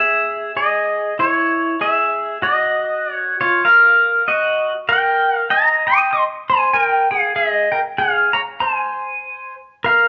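A lazy swing on the eighth notes sets a relaxed 97 BPM pulse in 4/4. This excerpt of Hawaiian music, cut from a longer piece, sits in Ab major and feels dreamy and unhurried. The electric pedal steel guitar carries the solo for the full 10.1 seconds, ranging from Fb4 up to Eb6. Played with fingerpicks and slide, its clean, twangy, compressed tone sits up front, shaped by volume swells. The harmony moves through Dbm, Ebm and Cm7 before settling on Ab6. A moderate reverb from a large studio, with the players together in one room, gives the bright steel a soft, lingering glow.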